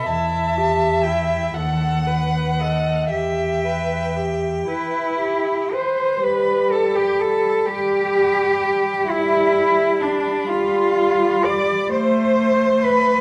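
Melancholic and yearning, this slow romantic string quartet movement in 6/8 with free rubato sets a distant, smooth first violin melody high above a focused second violin line, while the vibrato-rich viola and an intense, clear cello sit up front in a moderate recital hall reverb, the harmony turning from E minor to G around 6.2 seconds and on to A minor near the close of this fragment cut from a longer piece.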